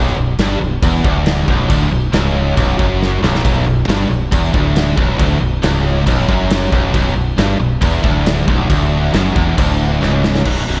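A big arena sound with a moderate concert-hall reverb frames this heavy, aggressive hard rock fragment, cut from a longer piece and resting on a single B minor chord. Three picked guitars sit in the background playing riffs: one bright and overdriven with slapback echo, one dark, sludgy and overdriven, and a tight, double-tracked distorted guitar that also carries slapback echo. Beneath them, a modern, bright fingered electric bass played direct drives the low end, while a big acoustic rock kit with bright cymbals, a medium-tuned snare and a punchy kick breaks into drum fills at 3.0 and 10.0 seconds.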